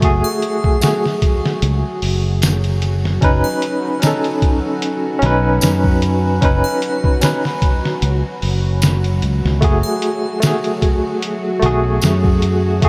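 A loosely swung trip hop groove rides on a compressed, pitched-down sampler-style drum kit with a thumpy kick, a medium-tuned snare and hi-hat, joined by a fingered electric bass that sits up front with a warm, amped tone, while close, dry triangle and tambourine tick quietly in the background from 0.2 to 12.2 seconds. A bright, barky tine electric piano, lightly overdriven through a combo amp with tremolo and tape echo, accompanies on F#madd9 and Badd9/F# chords, returning to F#madd9 at 9.6 seconds. Underneath, a detuned, string-like sawtooth drone with slow attack, vibrato and phaser hangs tense and distant, and the whole brooding, smoky excerpt is soaked in a huge, dreamy ambient reverb.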